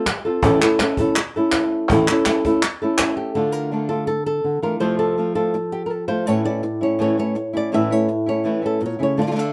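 A fingerpicked flamenco guitar carries the melody from start to finish, its warm acoustic tone sitting up front, with audible finger squeak as it ranges from A2 up to E5. This mournful, intense flamenco piece moves at 165 BPM in a straight 4/4. For the opening stretch, until about 3.2 seconds, a snappy cajon with its snares and crisp, up-front palmas hand claps drive the rhythm, the cajon carrying the air of a live room and the claps the closeness of a small one. From 3.4 seconds a second fingerpicked flamenco guitar, brighter and also up front, plays stabs between F2 and F4 as the harmony, which sits on A from the opening, moves through Dm and F before returning to A. Light reverb gives the recording some space, and the passage is cut from a longer piece.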